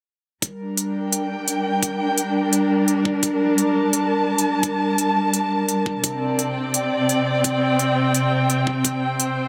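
A dark chamber string section, bowed with expressive vibrato and a smooth top, holds sustained chords up front, pumping against the sidechain as the harmony moves from G minor to a suspended C chord at 6.0 seconds. Beneath it, crisp, up-front electronic hi-hats and a knocking, high-passed kick, both layered and re-recorded in a small room, carry a swung half-time drum and bass groove. A lush hall reverb lends this dark, cinematic fragment of a longer piece its spacious, brooding air.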